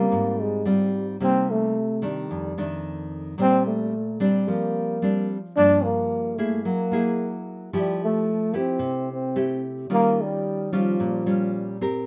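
A light reverb gives this brief cut from a longer bossa nova a gentle sense of space, moving at 110 BPM in a straight 4/4 with a sunny, breezy mood. A dark, roomy trombone carries the jazz-style solo melody with a light vibrato, while a full-bodied, fingerpicked nylon-string guitar in classical style accompanies through rich chords such as Dbmaj7#11, F13, Bb69 and Fmaj9. The trombone closes its line at 11.8 seconds, and the guitar rings on alone until 12.1 seconds.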